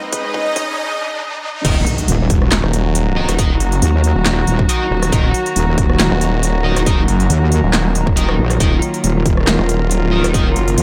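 A half-time 4/4 groove with a light swing on the sixteenths drives this aggressive, chaotic stretch of heavy wobble dubstep, cut from a longer piece. It opens on a short build-up: a drum fill and an electronic riser lead into a break. A soft supersaw sings a smooth lead above distant, reedy chamber strings bowing sustained chords with light vibrato, while a nostalgic, lo-fi tape-like pad warbles in the background. At 1.6 seconds the drop lands with an impact. A punchy, layered electronic kick and a big-room dance kit of crisp hats, handclaps, rim clicks, snare and crash, re-recorded in a large room, have played since the opening fill and now pound on. A heavy, up-front wobble bass and bright, double-tracked fuzz guitar stabs with tape echo join them. From 2.6 seconds a snarling, growling distorted saw bass thickens the low end, and the strings and pad pump against the kick beneath the churning bass and fuzz.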